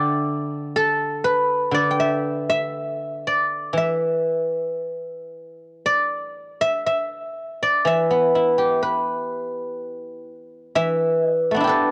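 Longing and contemplative, this brief cut from a longer Chinese traditional solo piece features a lone acoustic guzheng played with fingerpicks in a free, rubato 4/4 around 56-63 BPM in E yu mode, its silvery, ringing tone spanning D3 to D6 and sitting up front in light reverb and small-room ambience, while the home cassette recording colors the sound as the music moves into a new section at 5.8 seconds.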